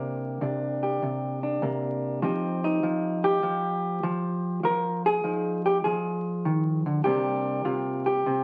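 A clean, dark hollow-body electric jazz guitar plays alone and up front, fingered and compressed, moving through C7sus2, Fm9 and Csus2 in a cool, late-night solo jazz passage at 99 BPM with a swung 4/4 feel. The short cut from a longer piece sits in a wet studio reverb and carries the crackle of a very old 78 rpm record.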